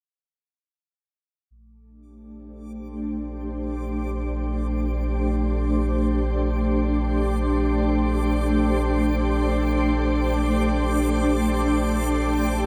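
A shimmering, detuned ambient pad with an octave-up halo, chorus and granular grain holds mellow sustained chords up front from 2.3 s over a deep, round sub bass that sits on Bb1 from 1.5 s, while a reversed, swelling texture adds a bright, dreamy glint high above from 2.7 s, the whole reflective, spacious free-time ambient fragment cut from a longer piece sitting in a long, wet reverb.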